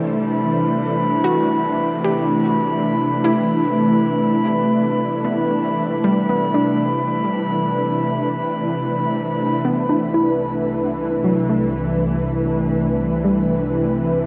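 Bathed in a huge ambient reverb and the warbly pitch drift of worn cassette tape, this weightless, serene ambient passage in C lydian moves at 75 BPM in 3/4, with a full-bodied, up-front airy pad holding sustained chords under a filter sweep, a soft, round pluck spinning dark arpeggios in the background through diffuse delay and shimmer, a bright, string-like bowed drone fading in until 9.6 seconds, and a glassy, pure glass harmonica texture that drifts above until 9.7 seconds, all over a gentle Gadd9 to Em to C progression.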